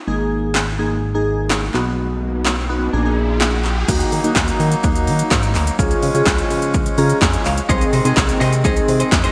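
A punchy, overdriven analog drum machine with gated reverb sits up front in this carefree, euphoric dance-pop excerpt at 126 BPM, driving kick, snare, handclaps, hi-hat, shaker and crash beneath glassy, chorused digital keys and a nasal, pulse-width-modulated synth bass that both pump against the beat, while a background riser builds from 1.5 seconds, a reedy accordion adds sustained, pumping chords from 3.9 seconds, and a bright, twangy twelve-string electric guitar riff arrives at 7.7 seconds, all set in a lush hall with a crisp 1980s-style digital sheen.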